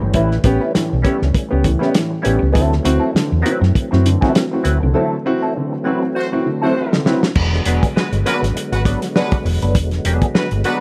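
This playful funk groove at 100 BPM opens with a fat snare and tight kick from a muffled, lo-fi soul kit, a round, amped short-scale bass up front, a woody upright piano with audible action noise, a clean hollow-body jazz guitar through wah, and a lightly overdriven tonewheel organ with key click and slow rotary sitting in the background, all swinging over A9 and D9 chords in E mixolydian. A break with a band accent arrives at 5.0 seconds, and at 6.2 seconds a mellow, distant horn section joins with slapback echo as the drums play a fill. The piano drops out at 7.2 seconds and the band settles onto E9, all in a light reverb, in this short cut from a longer piece.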